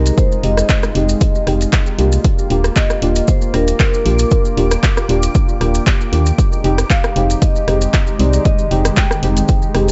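A ringing, metallic vibraphone melody with analog delay leads this smooth, warm deep house excerpt at 116 BPM in F dorian, floating over a chorused, vintage analog pad, soft, detuned chord stabs treated with chorus, phaser and delay, and a hollow, organ-like FM bass, all three pumping to the sidechain as the harmony moves from Fm9 to Ebmaj7 at 2.2 seconds and back to Fm9 at 6.4 seconds, while a blurred granular cloud pad drifts in at 0.3 seconds, a tape-tinged drum machine adds lightly swung handclaps, hi-hat and rim click alongside grainy, echoing maracas, and a punchy electronic kick sits up front in a dry, echo-heavy, darkly rounded mix.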